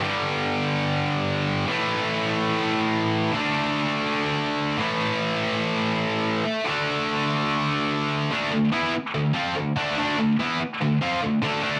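A straight 4/4 pulse at 145 BPM drives this short, heavy rock excerpt in D minor, cut from a longer piece. A single tight, distorted electric guitar carries everything on its own for the full 11.8 seconds, picked and double-tracked, sitting up front with a bright, biting edge across a range from G2 to F4. It moves through power chords on G, A and D before settling onto a D minor chord at 8.3 seconds, where the second section begins. A moderate studio reverb gives the guitar a short tail, while the cassette home recording lends the sound a slightly rough, homemade character. The mood is driving and heavy from start to finish.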